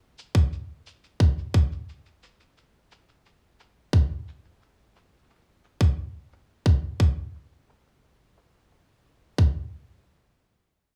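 A straight, steady pulse in four carries this short piece of folktronica, cut from a longer work, with a wistful, delicate mood. An electronic kick drum sits up front, tight and tape-tinged, and holds the groove from 0.3 seconds until 9.5 seconds. Far beneath it, a produced electronic cabasa runs faintly through a low-pass filter, its muted, tape-warm rustle barely surfacing. A filter sweep moves across the drums through the opening stretch until 9.4 seconds, when the music shifts into a brief closing passage and the percussion falls away. The sound is dry and close, with only a hint of small-room ambience.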